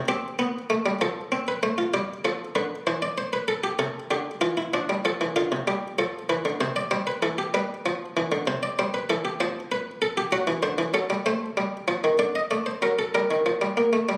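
Captured on a phone in a recital hall, the recording carries a wet room reverb with a club-style reverb and compression laid over it. Inside that space sits a joyful, lively baroque-style two-part invention for solo buff-stop harpsichord, moving at 64 BPM in a straight 6/8 counted in dotted quarters. The harpsichord itself sounds airy, muted and lute-like in the Italian style, its plucked tone dry and up front, ranging from C3 to Eb5. A brief opening passage outlines C5, F, G7 and C/E before a longer second passage begins at 3.8 s on Am/C and travels through G, C, F and D7 to an Adim and a closing turn toward Gm. The clip runs 14.2 seconds and is cut from a longer piece.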